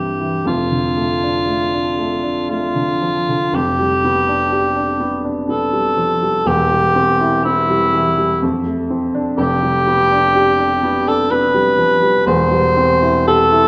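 A mellow, roomy cor anglais sings a lyrical, tender melody in this fragment of a romantic classical duo, flexing freely in rubato over a three-beat metre while a polished, warm baby grand piano supports it with a harmonic accompaniment, both set in a lush recital hall reverb.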